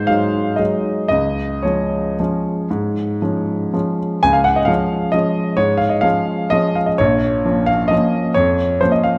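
A clear, intimate grand piano sits up front in a wet concert hall, its natural tone carrying audible action noise beneath a long, lingering reverb. This short classical waltz fragment in 3/4, cut from a longer piece, has the solo piano moving with an elegant, playful rubato across a span from Bb1 to Ab5. A passage that opens at 0.0 seconds is stated again from 4.2 seconds, with the harmony settling from Ab7 onto Db and turning to Bbm at 7.0 seconds.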